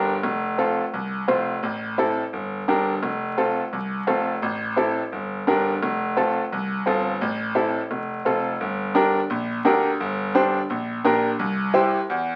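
Crackling like a very old 78 rpm record and set in a small, reverberant room, this festive, danceable cumbia excerpt moves at 172 BPM in 4/4 as an intimate, woody upright piano with audible action noise plays brilliant accompaniment in the middle register over a worn, deep-bass concert grand carrying the low line, both up front, cycling through F, Am and Gm before a new section at 8.6 seconds settles on Gm and turns to C.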